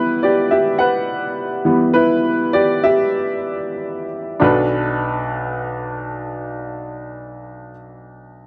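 A straight 4/4 pulse drives this short pop excerpt, easing as it slows down across its first 4.4 seconds before settling into a new passage. A bright upright piano carries the piece on its own from start to finish, spanning from B1 up to F#5 with a woody, brilliant tone that sits up front. The mood is driving and dramatic, with the harmony resting on Em at the opening and moving to Bm7 at 4.4 seconds. The sound is dry and close, with a modest booth ambience that gives it the feel of a 1970s-style studio recording. The clip is cut from a longer piece and runs to 8.5 seconds.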